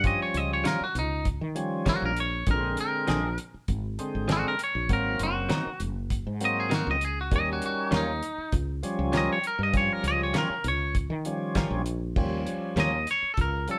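A bright, twangy electric guitar carries the melody up front in this rollicking, swaggering straight-eighth soul blues, with a clean guitar solo running until 12.2 s before the piece shifts into a new section. A thick tonewheel organ, lightly overdriven through a slow rotary speaker, fills out the harmony over Eb9, Bb9 and Ab9 chords, while a growly, hollow-bodied fretless bass and a cloth-damped, thuddy drum kit with a fat snare, tight kick and dark cymbals drive the groove. From 0.6 s a second electric guitar, recorded direct, adds crisp picked stabs, and the band sounds as if playing live together in one room with moderate reverb.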